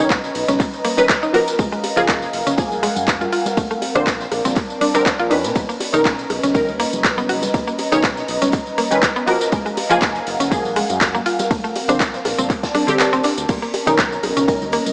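Sunny and warm, this deep house excerpt rides a lightly swung groove built on an overdriven, up-front electronic kick that drops out briefly at 13.0 seconds, with a layered drum kit of metallic hats, handclaps, rim clicks, tambourine and crash, a gritty garage kit of hi-hats and snare in a bright stone room, and close, hard-handed congas and bongos in the background. A woody, mallet-like FM pluck plays chorused arpeggios while muted, detuned dub chord stabs with phaser and dub echo pump alongside a round, dark analog bass, all moving through major-ninth chords. An airy, breathy pad with a moving notch sustains throughout, joined at 13.5 seconds by a silky vintage string machine, the whole mix sitting in a lush hall reverb with a small-speaker character.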